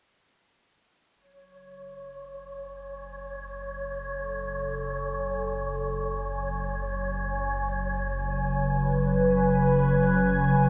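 Floating in free time, this short cut from a longer piece of ambient, sequencer-driven space music settles on a single F# minor chord from 1.1 seconds, its mood cosmic and mysterious. A phased analog pad sits up front, holding sustained chords with a slow attack and long release, its detuned, nasal sawtooth tone swirling through phaser and chorus while a filter sweep keeps it evolving. Beneath it, a round sine sub bass fades in on a deep F#, soft and mellow in the mix. From 1.7 seconds, a dark, breathy texture of tuned noise drifts in high above like wind, carrying its own reverb. The whole piece is bathed in a wet, lush hall reverb with a long tail and was recorded to cassette tape.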